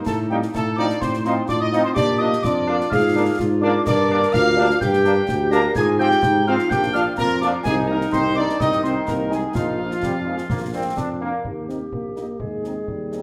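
Festive and proud, this military-style march for wind band is cut from a longer piece, with a distant, roomy trumpet section carrying the melody over a mellow tuba bass and close, dry concert snare drum, dark clash cymbals and concert bass drum. A woodwind section sits in the background beside a warm euphonium with light vibrato, while a pure, crisp-edged piccolo with vibrato adds a high line until 11.2 s, a very quiet French horn section fills in the accompaniment, and a bright, vintage-toned trombone section holds sustained chords until 11.4 s. The band rings in a large studio reverb, and at 11.5 s the march moves into a new section.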